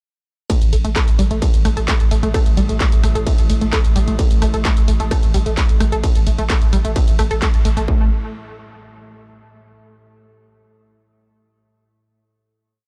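Relentless and hypnotic, this driving peak-time techno piece runs at 130 BPM in a straight 4/4, tuned to A4 = 438 Hz, with a distorted, up-front electronic kick pounding four-on-the-floor beneath a programmed techno kit of warm closed and half-open hats, ride, rim clicks and handclaps. A tight, detuned sawtooth synth plays a repeating 12-step sequence that drifts against the bar, pumping with sidechain and trailed by dub echo, while a growling, buzzy 808-style bass rumbles between the kicks on A1 through tube saturation and a low-pass filter. From 1.4 seconds an eerie, metallic FM drone with ring modulation hovers in the background, and the dark, dry production brings a band accent at 7.4 seconds before a final note rings from 7.9 to 9.7 seconds.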